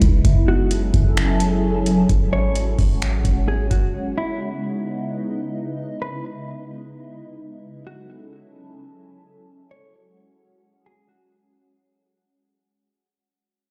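Atmospheric cloud-rap in a hazy, ethereal mood with a half-time feel, this excerpt opens on a shimmering, granular pad whose sustained chords carry chorus, phaser and sidechain pumping throughout, sounding together from the very start with a booming analog drum machine with a deep kick, metallic hats and finger snaps, plus a clean, sine-like 808-style bass, both of which stop at 3.9 seconds. A dark, compressed electric guitar enters at 0.5 seconds with a low-pass filtered, delayed melody, drifting over minor-seventh and suspended chords. The whole passage fades out inside a large, bare-room ambience with a big studio reverb.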